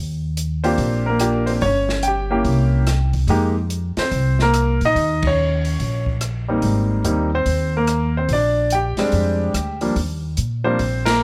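Playful and warm, this short jazz piano trio passage in Eb major swings at 144 BPM in 4/4, with a woody, thumpy pizzicato upright bass up front from the start, an airy drum kit of dark cymbals, rim click and a boomy kick entering at 0.4 seconds, and an intimate concert grand carrying the melody from 0.6 seconds with audible action noise, all moving through chords like Ebmaj9, C7b9 and Bb13 in light reverb, with band accents landing at 5.2 and 11.0 seconds.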